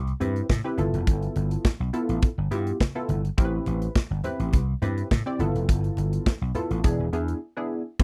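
Danceable and late-night, this early-eighties boogie funk excerpt moves at 104 BPM in a straight 4/4 in A minor, cycling through Am7, G13 and E7 before a brief break at 7.4 seconds. A punchy, amped vintage slap bass opens at 0.0 seconds, joined at 0.1 seconds by an airy, polished acoustic drum kit with a medium-tuned snare, a punchy kick, hi-hat and crash cymbal. From 0.2 seconds a sawtooth polysynth comp with a filter pluck and chorus adds detuned, mellow chords over thick-skinned, low-tuned congas that sit very quietly in a dry, close studio sound.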